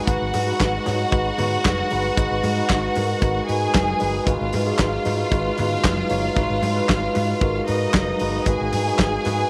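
Disco at 114 BPM in a straight 4/4, this danceable, driving excerpt sits on a G#m7 chord, with a damped 70s drum kit of tight kick, medium-tuned snare, hi-hat and handclaps up front beside a round, punchy hollow-body electric bass. A lush, bowed symphonic string section carries the second line with smooth vibrato, while a mellow tine electric piano plays clean accompaniment and a very quiet, dark French horn section holds soft-attack sustained chords. Very quiet ringing congas join at 0.3 seconds, and a moderate echo chamber reverb with small room ambience frames the short clip.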